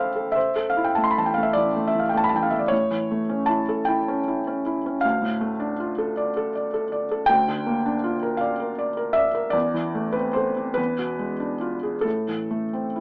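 A felt-muted upright piano, soft and intimate with audible action noise and placed up front, plays a yearning, wistful romantic nocturne in 12/8 with free rubato, its harmony moving from Am through A7, Dm and Bb/D to an E7b9 that resolves to Am at 12.0 seconds, all heard through light reverb and an AM-radio sound in this short fragment cut from a longer piece.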